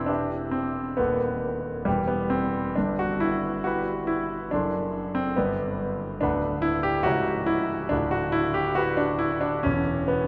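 A vast, echoing cathedral acoustic with a long, wet reverb surrounds a clear, polished concert grand piano that sits up front, its deep bass and short sustain giving each note a present edge. This romantic character piece for solo piano moves in a rubato two-beat lilt, its bittersweet and stormy mood drifting through E minor and G major harmonies before turning toward B minor at 6.2 seconds. The short fragment, cut from a longer work, spans the piano from its low register to its upper middle and ends on a C-sharp minor chord at 9.7 seconds.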